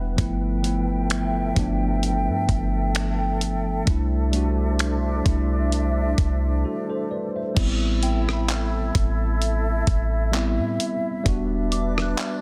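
A worn, slightly out-of-tune tine electric piano opens this moody, late-night contemporary R&B excerpt with a fill, joined by airy, vibrato-laden flute ensemble chords that pump against the beat and a deep, boomy 808-style bass. A dusty, gritty sampler-style kit, with its thumpy kick, snaps, handclaps, hi-hat, rim clicks, crashes and softly clipped snare, sits up front with a light swing, and a break arrives at 6.6 seconds. From 8.0 seconds, a faint, warbling FM synth bell with chorus and tape echo drifts in behind the dry, dense and heavily limited mix.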